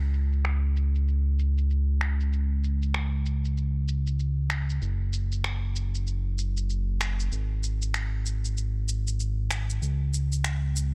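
A dry, gritty hardware recording carries this short, mystical organic downtempo cut at 96 BPM in 4/4 with swung 16ths, where an up-front, mellow sawtooth synth bass with tube saturation and a moving notch holds the low end from 0.0 seconds while a muffled, low-pass-filtered electronic shaker and finger snaps sit further back from 0.1 seconds.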